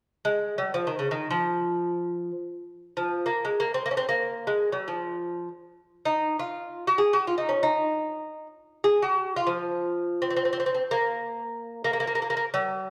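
A delicate, fingerpicked lute with doubled gut strings, some paired in octaves, plays alone and up front from 0.2 s, moving through Persian dastgah shur on F in free time, tuned to A4 = 438 Hz. Its longing, hypnotic line spans Db3 to Ab4 and shifts into a new passage at 11.1 s before this fragment of a longer piece breaks off. A wet recital hall reverb with a 1.4 s decay surrounds the lute.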